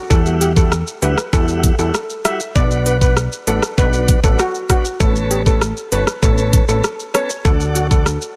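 Hypnotic and bouncy, this short dancehall excerpt at 98 BPM in E dorian sets a shimmering, metallic steel pan melody with digital delay over smooth tonewheel organ chords with key click, fast rotary speaker and sidechain pumping, a punchy, funky plucky analog bass with a filter pluck and fast attack, and an up-front electronic pop drum kit of knocking kick, crisp hi-hat, rim click and shaker, all moving through Emadd9, Bm, Aadd9 and D in a digital ambience.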